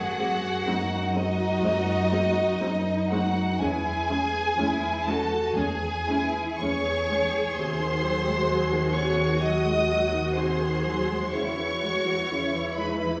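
Classical, a slow romantic movement for string orchestra in C# minor, solemn and elegiac, moving at 55-66 BPM in 4/4 with a rubato feel and tuned to A4 = 445 Hz. A clear, lush first violin section carries the melody up front over a distant, rich second violin line, while a dark double bass section holds a smooth, even foundation; a cello section with expressive portamento also supports the low end, and a dark viola section joins at 0.2 s with its own sliding accompaniment. The harmony moves between G#7 and C#m chords over shifting bass notes, heard from further back in a wet recital hall in this 13.2-second cut from a longer piece.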